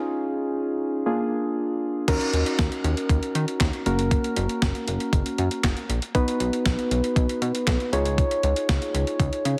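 Melancholic yet driving, this synth-pop fragment from a longer piece moves in a straight 4/4 over a minor-key progression. It opens with a brief break in which muted, felt-like synth keys play alone, their soft triangle and sawtooth tone carrying a faint noise layer, a chorus and a dark, intimate, decaying quality. At 2.1 seconds a glossy, retro synth bass enters, blending pulse-wave and sawtooth tones with pulse-width and ring modulation, a plucky filter and a chorused shimmer, alongside a clean 12-bit drum machine. The sampler-style kit brings a thumpy kick, a medium-tuned snare, handclaps, hi-hat and crash, all overdriven and re-recorded in a small room. The keys, bass and drums sit up front, wrapped in a lush hall reverb and squeezed into a heavily compressed, radio-ready sound that runs until 9.6 seconds.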